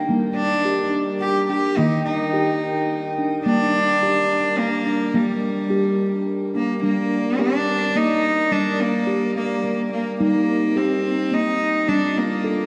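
Moving in a straight 3/4 at 107 BPM, this gentle, hypnotic world meditative fragment in G minor pairs a round, ringing steel tongue drum played with rubber mallets in arpeggios with glassy, ethereal sustained chords from a beating, band-limited glass harmonica, while a clear, floating bowed cello carries the melody up front from 0.4 seconds; the drum and cello sit in shimmer reverb and diffuse ambient delay, the harmonica in shimmer reverb, all within a wet concert hall as the harmony drifts from Gm through Eb to Cm/G and Dm/G.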